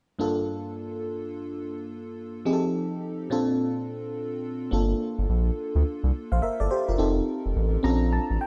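A swung sixteenth-note groove at 106 BPM in 4/4 drives this short new jack swing excerpt in G minor, punchy and slick in mood. An FM electric piano layered with a soft pad carries the chords from 0.2 seconds, lush, dreamy and mellow with a chorus shimmer, cycling through Gm7, F7 and Bbmaj9 and adding a fill near the close. A round, deep analog bass enters up front at 4.7 seconds, all under light reverb.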